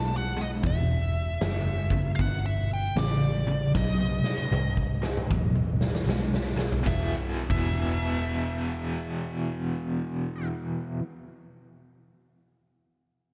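This short excerpt from a longer piece opens with a dark, smooth lead guitar carrying the melody through wah and overdrive, alongside a double-tracked, picked rhythm guitar playing a riff with tremolo and a foam-muted vintage bass with a round, amped tone. It is smoky, brooding blues rock in the power-trio mold with a southern rock lean, moving at a slow 77 BPM in 4/4 with a swung eighth-note feel. A big rock drum kit enters at 0.6 seconds, natural and roomy, with a punchy kick, a medium-tuned snare, toms, hi-hat and bright crash cymbals sitting up front beside the riff guitar. The harmony moves from B7(no3) through Em7 to a tense B7b9, where a drum fill runs from 3.7 to 6.8 seconds before the music settles on E5 in a new section. Light reverb and studio ambience frame the parts, and the lead guitar sits lower in the mix than the riff and bass.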